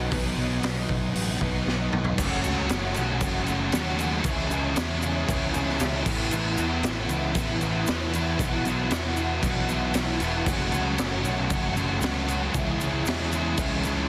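A carefree, jangly indie rock passage at 116 BPM opens on a B chord, with two overdriven electric guitars, a fuzz-soaked picked bass and a very quiet, reedy tonewheel organ sounding together, joined a moment later by an up-front garage drum kit. The raw guitar plays a riff thickened by ensemble chorus, while the sludgy distorted guitar adds its own picked riff from the background, and the bass anchors the low end with a direct, amped growl. The organ holds bright sustained chords with key click and a slow rotary speaker, its light overdrive tucked under the band. The small-room kit sounds gritty and saturated, with a high-tuned snare, a boomy soft-clipped kick and a rolled-off top. A drum fill from 1.7 to 2.2 seconds leads into the main section, where a grainy, close tube shaker enters in the background and the chords move through F#m, C#m, Asus2 and Bsus4. Studio reverb and a dense, heavily limited modern master give the cut-down excerpt a loud, packed sound.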